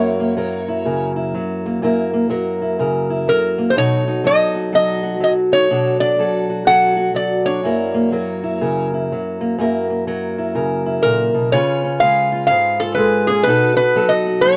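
A dry, close 1970s-style studio sound with a touch of booth ambience frames this gritty, soulful acoustic country blues excerpt at 124 BPM, swung in 4/4 and set in F# mixolydian, where a metal-body resonator guitar, played with slide and fingerpicks, sings the melody up front in a bright, nasal, metallic voice over a dark, boxy parlour steel-string acoustic guitar fingerpicking the accompaniment through F#7, B7, Bm7 and C#7 changes.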